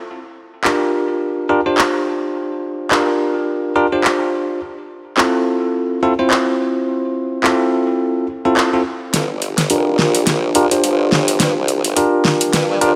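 The bell-like tine electric piano stands out most, playing bright, clean stabs up front through a low-pass filter and delay from 0.7 s, ranging from C4 to C5 over a Gm7 that moves to Fmaj7 at 4.6 s. This is a swaggering, gritty glitch hop excerpt in G dorian at 106 BPM in 4/4, with a 57% swing on the sixteenths and tuning set to A4 = 445 Hz. A pop drum kit enters at 0.6 s with handclaps, metallic hi-hats and a fat snare, its electronic, layered sound sitting up front with a tape-warm character and studio ambience. At 9.1 s the harmony returns to Gm7 and a build-up with a drum fill begins, as a formant-sweep wobble bass arrives between F1 and G2, its sawtooth and sine tones saturated through tube saturation, chorus and a high-pass filter, with a fast attack and sustained, compressed body. A moderate, lush hall reverb with a 2.4 s decay surrounds the mix.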